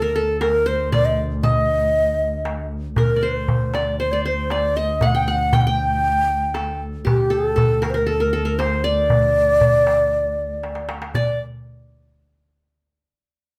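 The recording sits in a small, reverberant room, with the ney close-miked and up front while the bowed double bass lies distant beneath it. This brief, soulful and melancholic piece of Arabic maqam ensemble music moves in a steady, straight four. The breathy, end-blown reed-cane ney carries the melody, tongued and expressive with vibrato. A plectrum-plucked qanun with bright-edged triple strings traces a second line in the same register. A single bowed double bass holds a low drone with vibrato and portamento, and a crisp metal-shelled darbuka, played with soft hands, enters at 0.2 seconds and plays a fill from 10.6 seconds before the ensemble stops around 11.4 seconds.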